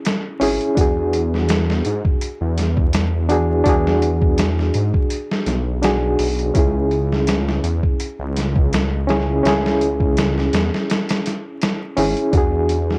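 A smoky, dark trip hop groove with a lightly swung 4/4 feel, cut from a longer piece and running about 13 seconds. A reedy, clean electric piano carries the accompaniment in a narrow middle register, its tremolo adding a gentle pulse as the harmony moves between C#m and E7. Sampler-style drums sit up front, compressed, pitched down and gritty, with a thumpy kick, a medium-tuned snare and hi-hat, carrying a tape-warm, small-room character. At 0.4 seconds a deep, rumbling detuned saw bass enters, its unison voices beating against each other, thickened by tube saturation and held long under the other parts. The whole recording has a worn, warbling old-tape quality with a cassette-tape character, vinyl crackle, drifting pitch and a touch of light reverb.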